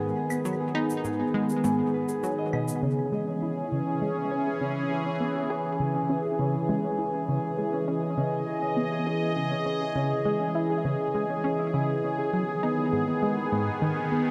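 Hypnotic and mysterious, this ambient, sequencer-driven space music fragment pairs a bright, detuned sawtooth pad that sits up front with a tight, driving sequenced synth riff colored by chorus, phaser and tape echo, while a ringing, thumb-plucked Celtic harp arpeggiates in the background under a filter sweep from 2.8 s, analog-sounding cabasa and claves tick briefly from 0.3 to 2.8 s, and the whole piece floats in a vast, echoing cathedral reverb.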